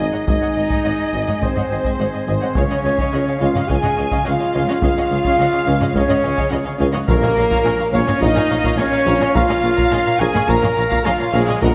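A moderate recital-hall reverb surrounds this heroic, relentless epic orchestral film cue at 106 BPM in 4/4, where a lush, vibrato-rich violin section carries the melody over an airy, very quiet flute line and a second, background violin line, a smooth viola accompaniment, sustained chords from a vintage-toned French horn section and a very quiet woodwind section, clear trumpet stabs, a bass of dark, woody cellos, distant double basses and a soft-attack tuba, heavy-stick taiko drums entering at 0.3 seconds, and hard-mallet timpani at 7.1 seconds, all moving from Ab to Dbadd9 to Bbm in a fragment cut from a longer piece.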